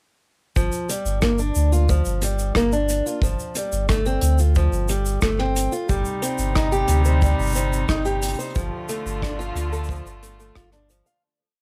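A fingerpicked acoustic archtop guitar leads this short, autumnal folktronica piece, its eight-step arpeggiated sequence sitting up front with audible finger squeak, a gritty vintage sampler texture, tape echo and plate reverb. Beneath it, a deep, round sine sub bass plays a dotted rhythm in a low register, mellow yet forward in the mix. A tight, soft acoustic kick and a small-room brush kit supply a gentle 90 BPM groove in straight 4/4, the brushes adding closed hi-hat, rim click and shaker in a clicking found-sound beat. At 5.9 seconds a close, chamber-style string quartet enters with bowed, sustained chords, its reedy gut-string tone and light vibrato lending a period feel. The harmony moves over a steady G in the bass, from G7 through Fsus2 and C minor to D minor, giving the whole a wistful cast as the piece fades out from 7.7 seconds to its end at 11.2 seconds.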